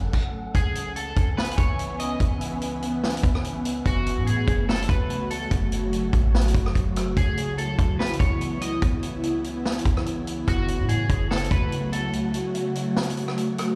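A half-time 4/4 pulse at 145 BPM anchors this hazy, ethereal cloud-rap excerpt in C# minor: a vintage drum kit with a punchy kick and high-tuned snare sits up front over a deep, boomy 808-style bass, and the bass drops out at 12.1 seconds as the kick falls silent. Above them, a mellow, airy pad with ensemble chorus and sidechain pumping sustains chords that alternate between F#m and C#m7, while a slightly broken-up, twangy electric guitar carries the melody through chorus, a low-pass filter and delay, and a breathy, wind-like noise texture drifts in the background, the whole mix sitting in a large studio reverb.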